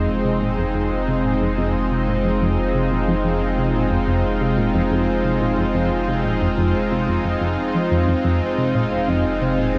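This hypnotic, cosmic slice of ambient space music opens with a lush, detuned unison pad holding a sustained Fm7 chord up front, bright and thick with a warbling vintage character under chorus and shimmer reverb. Beneath it, a tight, driving sequenced synth repeats a riff in a low register, its sawtooth-and-square tone plucked by the filter and softened by chorus, cassette tape coloring and tape echo. A round analog bass sits deep in the mix on a single low note, dark and faintly nasal. At 8.4 s a breathy, flute-like synth lead enters with a soft attack and gentle vibrato, carrying a brief melody high above the pad through subtle chorus, shimmer reverb and tape echo. The whole mix is dreamy and soaked in a long hall reverb, and the passage is cut from a longer piece, ending at 9.8 s.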